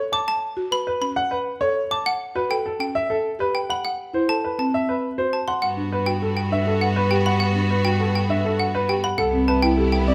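Minimalist classical pattern music in a straight 3/4, propulsive and hypnotic, taken from a longer piece. A boxy, up-front grand piano carries the melody in the upper-middle register while a buzzing marimba played with soft mallets and a dry, percussive xylophone spin arpeggios beneath and above it, the marimba round and airy against the xylophone's woody, percussive attack. At 5.6 seconds the harmony settles onto a rich Gmaj9, and a bright, lush violin section enters with intense vibrato on sustained bowed chords, joined by a clear, focused double bass played by a single bowed player. The chord movement shifts every couple of seconds in the opening before resting longer on the new tonal center, closing on Cmaj7#11. The sound is close and detailed, set in a moderate recital hall reverb.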